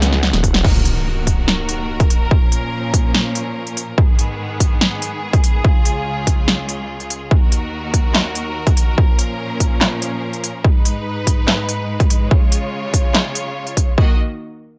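Chaotic and heavy, this cut from a longer heavy wobble dubstep track moves at 144 BPM in a half-time 4/4 feel, rooted in Eb minor. It opens on a drum fill from the big-room dance drum kit, with punchy snare, crisp hats, handclaps and crash cymbal, all overdriven and up front, while a snarling, growling saw bass with detuned unison voices and a resonant moving notch bites hard before stopping at 0.6 seconds. At that point an electronic impact hits and rings until 2.3 seconds, and the sequence cycles through Ebm, Bbm, Abm and Db. A clear studio string section holds lush, bowed chords with vibrato and an intense edge throughout, ducking under sidechain pumping and shaded by a low-pass filter. Alongside it, a punchy, overdriven electronic kick drives the groove from 0.4 seconds on, and the dry, upfront mix keeps the whole assault close and forceful.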